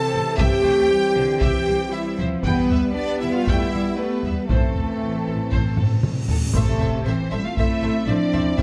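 Mellow French horns with a soft attack hold sustained chords at the front of this dark, heroic cinematic orchestral cue in A minor, moving at 117 BPM in a straight 4/4 and cut from a longer piece. Beneath them, warm trombones with light vibrato add more sustained chords, while rich, bowed cellos and warm double basses in the background, both with vibrato, carry the bass through a C, E minor and A minor progression. Two lush violin sections, one smooth and distant, the other expressive, share the upper register as second line and melody, with a woody viola section filling in accompaniment. A taiko ensemble struck with hard sticks enters at 0.4 s, and timpani join at 4.5 s for a fill in the background. A huge, bright cymbal swell leads into an impact at 6.5 s, and the whole orchestra sits in a moderate scoring-stage reverb captured with close, detailed microphones.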